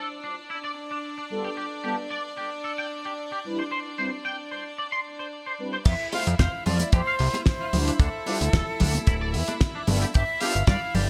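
A bright, 1980s-style digital production with light studio reverb carries this sunny, feel-good nu-disco excerpt in G mixolydian at 112 BPM, opening on a twangy, clean electric guitar riff under a filter sweep, set against distant, earthy chamber strings holding sustained chords that pump with sidechain. A round, brassy synth brass enters at 1.3 seconds with chorus, phaser and delay over G9 and Cmaj9 chords. At 5.9 seconds the drop arrives: an airy silver flute takes the melody, a fat, detuned analog bass with tube saturation sits up front beside a tight, dry kick, and a damped 70s kit with dark cymbals and a fat snare comes in, followed moments later by warm bongos and congas in the background.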